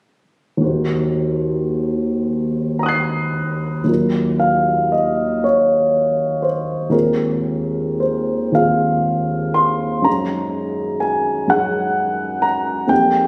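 A warm grand piano plays alone and up front, its long sustain letting each chord hang in a moderate concert-hall reverb. The music is impressionist classical in 6/8, moving freely with rubato and carrying a hazy, mysterious mood. The piano spans a broad register, from deep bass notes to glinting highs, and its harmony drifts through minor colours with added sixths and ninths before settling onto open, luminous chords. A short opening phrase gives way at 3.9 seconds to a longer passage that runs until the piano stops at 13.3 seconds. The sound is present and close, with a touch of compression, and this brief passage is cut from a longer piece.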